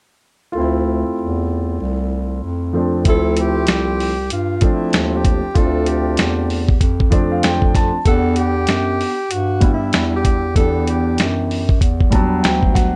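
Jazz-hop with a mellow, nocturnal mood, this swinging 4/4 hip hop excerpt is cut from a longer piece. A dark, vintage baby grand piano with smooth tone and long sustain opens at 0.5 seconds as accompaniment, joined almost at once by a close-miked bass clarinet that carries the low line in a jazz style with subtone and light vibrato. At 3.1 seconds a dusty, sampler-style drum kit arrives with a thumpy kick, a medium-tuned snare and hi-hat, compressed and gritty. A breathy alto saxophone takes the melody at the same moment, its scooped notes and smooth top trailed by analog delay, and it finishes at 11.5 seconds. The piano adds fills along the way as the harmony moves from Dm9 to Em9, while drums, piano and bass clarinet sit up front in a warm mix with moderate studio reverb.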